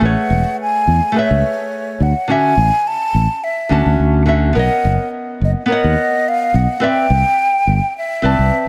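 A fingerpicked nylon-string guitar, a hollow, airy concert flute and a fingered electric bass all begin together in this blissful, relaxed sunset chillout piece, a short section cut from a longer track in a straight four-four feel. The flute carries the melody up front with a mellow, soft-attacked tone and gentle vibrato, and a tape echo trails its phrases. The small-sounding acoustic guitar plays the accompaniment close up, its fingerpicked chords roughened by a vintage 12-bit sampler grit and also touched by tape echo. Underneath, the warm, direct, amped bass sits slightly louder than the other parts and stops at 8.5 seconds, just before the guitar and flute end at 8.7 seconds. The harmony drifts through lush Amaj9, Dmaj9, Bmaj9 and Cmaj9 chords, and light reverb gives the whole a small-room intimacy.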